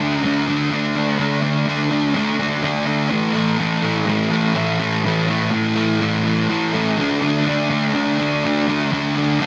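A fuzz-laden electric guitar carries this short rock excerpt entirely on its own, picked and double-tracked so it sits thick and up front in the mix. The mood is hazy and blissful, moving at 124 BPM in a straight 4/4 feel with the tuning set to A4 = 441 Hz. Its distorted, compressed tone gets a subtle chorus shimmer, and the part ranges from A2 up to D4 as it moves through power chords on D5, shifting to A5 at 3.1 seconds and back to D5 at 7.0 seconds. A wet concert hall reverb with a 2.5-second decay surrounds the guitar in a long, glowing tail. The dense, heavily limited modern master keeps the sound full and pressed together across the 9.5-second fragment, which is cut from a longer piece.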